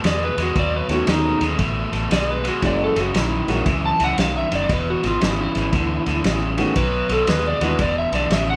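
Electric blues shuffle in B mixolydian at 116 BPM, swung and laid-back with a rollicking edge, cut from a longer piece and played live together in one room with light reverb. A crunchy, bright overdriven guitar sits up front playing the riff, while a vintage muted fingered bass gives a round, foam-muted bottom end. The vintage drum kit is lo-fi and muffled, with a punchy kick, fat snare and dark ride cymbal under a rolled-off top. Carrying the solo throughout is an electric slide guitar with a dark, slightly broken-up tone. An upright piano enters at 0.9 seconds with woody, polished accompaniment and stops at 7.8 seconds, as the changes move from B7 through F#7 and E7 before settling on B and an E7 voicing that omits the third.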